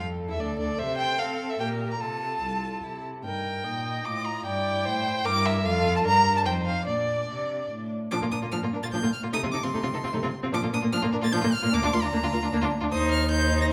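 Lively and graceful, this quick classical-period string quartet movement in 3/4 sets a focused, clear first violin melody over a smooth second violin line held up front, an even viola accompaniment and a rich, distant-sounding cello bass, all four bowed by single players with vibrato and carried by the wet reverb of a recital hall in this passage cut from a longer piece.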